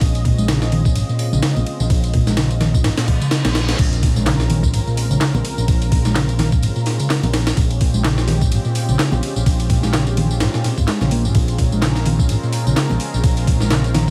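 Breakbeat with an energetic, gritty drive, this excerpt pairs a compressed, pitched-up sampler kit with a thumpy kick and high-tuned snare against a layered house kit of handclaps, tambourine and bright hats, while a dark, round picked electric bass and a hollow-body short-scale bass riff with tube saturation and digital delay sit under a lush, detuned sawtooth pad with chorus, sampler grit and sidechain pumping, faint damped congas enter at 0.7 seconds, and a very quiet reverse cymbal and impact mark the drop at 3.8 seconds over vinyl crackle.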